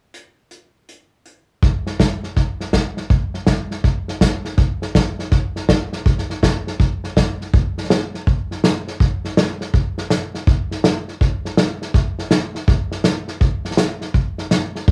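A swung eighth-note feel in 4/4 drives this brisk country clip, taken from a longer piece. The only instrument is an acoustic drum kit of hi-hat, kick and snare, played with bundle sticks and sitting up front in the mix from 0.1 to 14.9 seconds. The kick is punchy and the snare medium-tuned, and the kit carries a cassette tape coloring. The arrangement moves through three short sections, shifting at 1.6 and again at 7.5 seconds. It sounds like a home recording on cassette in a small, wet-sounding booth with a short reverb, giving the groove a nostalgic, sunny character.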